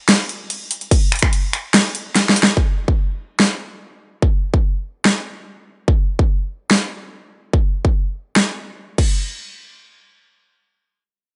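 Heavy and chaotic, this half-time dubstep fragment at 145 BPM is cut from a longer piece and opens on a drop. A layered, big-room dance drum kit with a huge snare, metallic hi-hats, crash cymbal and finger snaps sits up front from the start, and a punchy electronic kick joins at 0.9 seconds. The kick drops out at 1.7 seconds ahead of a drum fill, and both parts carry a dry, small-room character with a dark top end.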